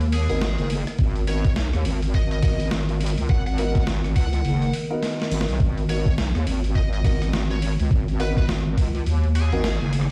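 Crackling with vinyl noise and the boom of a big sound system in a bare room, this gritty, playful glitch hop excerpt at 104 BPM in G# minor swings over a single G#m7 chord, where a heavy, up-front wobble bass with overdrive and chorus sits under a thumpy electronic kick that enters at 1.0 s, compressed boom bap sampler drums with a high-tuned snare and a fill at 5.0 s, boxy dark baby grand piano stabs with sidechain pumping and delay, a bright high-gain lead guitar melody with distortion and delay, and a warbling, nostalgic tape-like pad with 12-bit sampler grit in the background.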